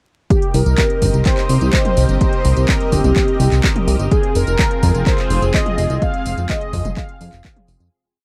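A glossy, up-front chorused synth bass gallops in sixteenth notes through this short, melodramatic and bittersweet Italo disco piece in F minor at 126 BPM, driven by a punchy, overdriven four-on-the-floor electronic kick and a house drum kit of handclaps, tambourine, toms and metallic hi-hats, while a lush, detuned unison pad with chorus and phaser holds sustained chords over a Cm7-to-Fm move and a round, vibrato-tinged synth brass carries a motif-based melody through cassette-tape coloring and tape echo, all in a dry, close 1970s-style recording with light reverb and vinyl crackle that fades out from 5.4 to 7.9 seconds.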